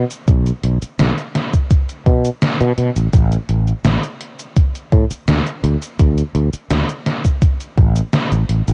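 A sustaining fretless electric bass opens this faded, nostalgic vaporwave fragment at 84 BPM, bright and growly up front as it moves between A1 and B2. A gated 80s digital drum machine with cabasa, hi-hat and an overdriven gated-reverb snare joins at 0.1 seconds, and a thumpy, overdriven electronic kick follows at 0.3 seconds, both sampler-style and re-recorded in a small room. The whole is dry in its overall space but worn by warbling old cassette tape, with pitch drift and a dulled top end.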